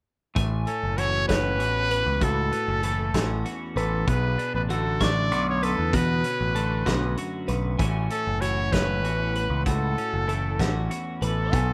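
Two twangy, clean twelve-string electric guitars open this playful, wistful math rock and midwest emo excerpt in A major at 0.4 seconds, one picking a low accompaniment while the other spins high arpeggios through spring and plate reverb. A growling, overdriven picked bass and a loose indie drum kit with a fat snare and punchy kick join at the same moment, in a slow 6/8 at 64 BPM. From 0.7 seconds a vibrato-laden trumpet carries the melody up front over A6 and Bm9 chords, all in a rough home-demo mix.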